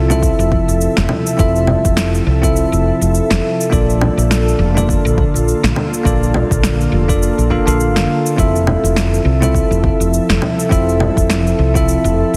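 Heavily compressed with a radio-like sheen and light reverb, this blissful, sunny sunset chillout excerpt sits at 103 BPM with a 16th-note swing in F major, as a bell-like tine electric piano with tape echo and an ethereal, airy pad with ensemble chorus carry Fmaj7 to Bbmaj7 and back to Fmaj7 over a round, woody fretless electric bass, while overdriven electronic congas, cabasa and a punchy snare join at 0.1 seconds and a deep electronic kick at 0.2 seconds, both re-recorded in a small room.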